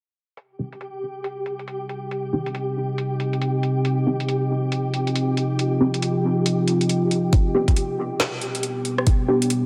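Deep dubstep at 138 BPM in C harmonic minor, cavernous and meditative, with a swung half-time garage kit of woody snare and metallic, low-passed hats pushed through overdrive, while muted, detuned dub chord stabs carry phaser, lush chorus, dub echo and a filter sweep across the cut. A dark, moody sawtooth-and-sine pad holds sustained chords up front from 1.7 seconds, and a flickering, grainy granular texture hovers on a single G in its own reverb beneath. At 7.3 seconds the harmony moves from C minor to G and an overdriven, knocking electronic kick lands up front, all set in light digital ambience.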